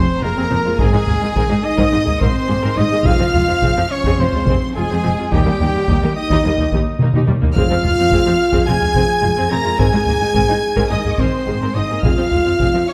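Close, heavy-sticked taiko drums drive this dark, epic cinematic orchestral excerpt, with a fill at 7.0 seconds, beneath mellow French horn chords, punchy trumpet stabs, and lush, vibrato-rich violins carrying a distant melody over a background second line, while smooth violas, background cellos and woody, soft-attacked double basses fill out the low strings and a very quiet timpani note with round, soft mallets sounds at 3.1 seconds, all within a moderate scoring-stage reverb and a faint mains hum.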